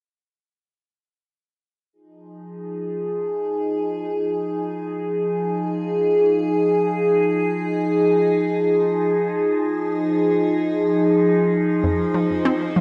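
In free time, this cosmic, mysterious stretch of sequencer-driven space music drifts on an evolving, morphing wavetable pad that holds a sustained Fm7 chord from 2.6 seconds through phaser, shimmer and its own reverb, until a bright, round analog pluck with chorus and tape echo slips in at 11.8 seconds with a riff, all set in a dreamy mix soaked in lush hall reverb.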